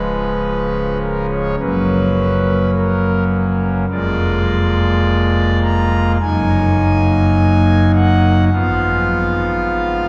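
A solo pipe organ on thick, romantic foundation stops sits up front in this dark, solemn classical chorale-style passage in Eb minor, moving at a slow 52 BPM in straight 4/4 from Db7 through Gb, Bb7/F and Ebm/Gb to Fdim/Ab across a span reaching from Db1 to Bb5, all bathed in a cavernous cathedral reverb of 5.5 seconds in this short cut from a longer piece.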